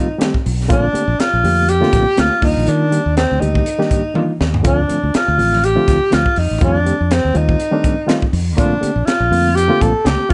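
A breathy, whispered tenor saxophone sings the mellow, vibrato-laden melody over a barky, lightly overdriven electric piano with fast tremolo from the very start of this intense, nocturnal electric jazz fusion excerpt, joined at 0.2 seconds by a crisp, gritty, up-front drum kit with a punchy kick and high-tuned snare in a small pumping room, then at 0.5 seconds by a direct fingered electric bass, with a brief drum fill at 4.2 seconds, on lightly swung sixteenths, inside a dark, warm production.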